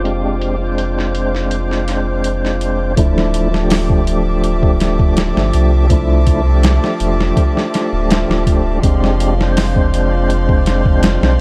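A low-passed digital ambience surrounds this smoky, hypnotic trip hop passage, cut from a longer piece at 82 BPM in D minor. Gritty, pitched-down boom bap sampler drums with a thumpy kick and a medium-tuned snare sit up front, alongside a round sine sub bass with tube saturation. A fat, lightly overdriven tonewheel organ spins through a fast rotary speaker with tremolo and tape echo, while an earthy chamber string section holds bowed chords with light vibrato as the harmony moves from Fm6 to Dmadd9 at 3.0 seconds and back to Fm6 at 8.8 seconds.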